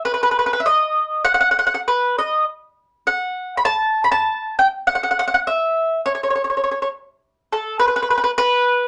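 Sunny and romantic, this brief excerpt of Italian folk music features a lone mandolin at 101 BPM in 4/4, with a gentle swing on the eighth notes and tuning set to A4 = 437 Hz. The acoustic mandolin sits up front, its picked double strings sounding woody and warm as it plays from 0.1 to 8.9 seconds in a range from A4 to B5. A moderate small-room reverb adds a touch of intimate space around the instrument.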